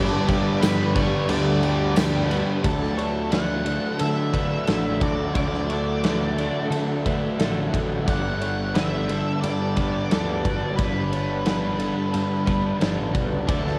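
A dark, fuzzed lead guitar opens this shoegaze and dream pop cut, singing a melody through distortion and tape echo over a shimmering, ethereal pad, a bright, compressed twelve-string arpeggio, and a wall of picked rhythm guitars on a Gadd9 chord. The riff guitars stack up thickly: a crunchy overdriven part sits up front with reverse reverb, a thick fuzz guitar with analog chorus lurks in the background, and a biting, double-tracked overdriven guitar with spring reverb drops out at 2.6 seconds. A huge, acoustic arena drum kit enters at 0.3 seconds, dark and smooth with a punchy kick and rolled-off top, joined briefly by a jingly, saturated tambourine. A growling, overdriven picked bass anchors the low end as the harmony moves to Dadd9 at 2.7 seconds and back to Gadd9 later. At a steady 89 BPM in straight 4/4, the mood is wistful and blissful, with a light room sheen and the hazy feel of a home cassette recording.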